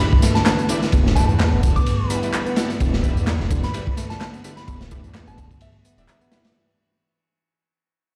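Heard through a big sound system in a bare room with large studio reverb, this raw, gritty breakbeat clip at 128 BPM on Em7 puts a crunchy, saturated acoustic drum kit up front with tight kick, dark cymbals and swung sixteenths, adds analog electronic tambourine and handclaps, brings in a thick, menacing detuned saw bass at 0.9 seconds, and layers a reedy, overdriven electric piano riff with fast tremolo, bold orchestra-hit-like stabs with delay, a warbling lo-fi tape pad with sidechain pumping, and a soft, pure FM bell melody with old-record colour, chorus and delay, as the drop fades out.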